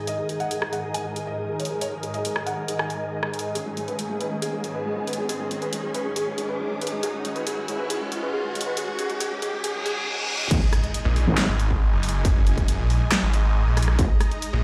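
A growling, distorted saw bass with a bright, snarling edge enters at 11.1 seconds, moments after the drop lands at 10.5 seconds in this heavy, aggressive wobble dubstep cut from a longer piece, moving at 138 BPM in a half-time 4/4 feel. Before that, the build-up pairs a soft, intimate felt-muted upright piano melody, dark and mellow under a digital delay, with an ethereal, airy pad that sits in the background, treated with ensemble chorus, phaser and sidechain pumping. Huge, lush supersaw chords sustain throughout, pumping under sidechain and passing through a low-pass filter sweep, while electronic sound effects supply a riser, a reverse cymbal and an impact at the drop. The dubstep drum kit runs across the whole clip with a huge snare, bright hats, handclaps, rim clicks and crash cymbals. At the drop, an up-front wobble bass with chorus and overdrive joins a distorted, tape-warm electronic kick, and the mix carries a lush hall reverb and the character of a big sound system in a bare room.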